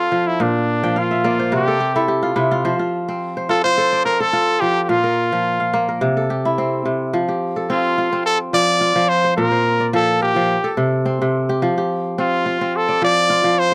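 A brilliant, punchy trumpet sings a jazz-style solo melody with light vibrato and scooped notes over crisp, ringing fingerpicked kora arpeggios, which break into a fill from 0.8 to 2.7 seconds, in this hypnotic, joyful West African traditional piece at 107 BPM in F major, cycling through Bb, C and F chords with a gently swung feel, moving into a new section at 7.1 seconds, and captured with light reverb in a dry, close 1970s-style studio sound as a short cut from a longer piece.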